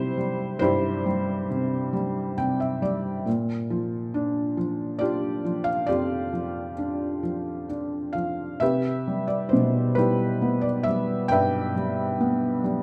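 Heard through a moderate recital-hall reverb, this calm, lyrical classical excerpt centres on a solo felt-muted upright piano, soft, mellow and intimate with audible action noise and placed up front, moving in a rubato 6/8 at 45 BPM in C major (tuned to A4 = 437 Hz), where a fill from 1.9 to 3.3 seconds leads into a Bb6 chord before the harmony settles on Cmaj7 at 8.6 seconds.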